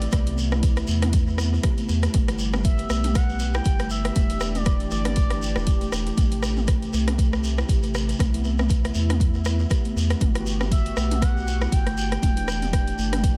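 A swung afro house groove at 119 BPM rides on an up-front, tape-warm electronic kick, an overdriven deep house kit of hi-hat, rim click and toms, and a grainy, distant shekere, while a round, nasal analog bass anchors an earthy, spiritual progression from Cmaj7 through G, Em7 and Am7. A buzzing, woody kalimba spins arpeggios and a detuned sawtooth pad breathes sustained chords, both pumping against the kick. A smooth, expressive synth lead with vibrato sings in a high register, pausing at 5.9 seconds and returning at 10.7 seconds, as a barely audible downlifter opens this echo-heavy excerpt of a longer piece.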